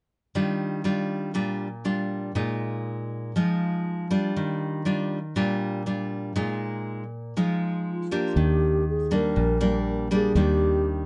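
A relaxed, breezy bossa nova in Eb major opens with a full-bodied, fingerpicked nylon-string guitar, up front and classical in tone, moving between Ebmaj9 and Bb7sus4 at 120 BPM in a straight 4/4 feel. The guitar carries the piece alone until the alto flute slips in at 7.9 seconds, its pure, hollow tone set at a distance with plate reverb, a gentle vibrato and a soft attack. A fingered electric bass joins at 8.4 seconds, round and dark with a foam-muted, amped directness, sitting close as the harmony settles on Ebmaj7. The flute's short line stays within a narrow middle range, while the guitar keeps supplying the chords beneath it. Light reverb and a soft, mellow top end give the recording a relaxed intimacy, and the passage is cut from a longer piece, stopping at 11.1 seconds.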